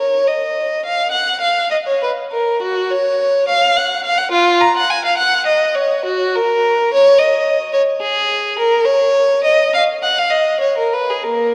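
Swaying in an uneven, rubato 6/8, this introspective and flowing baroque-style suite movement for unaccompanied violin, cut from a longer piece, presents one up-front bowed player whose rich, focused tone with vibrato and a smooth top rings out in a long, wet church reverb, all colored by the warbling pitch drift of worn old cassette tape.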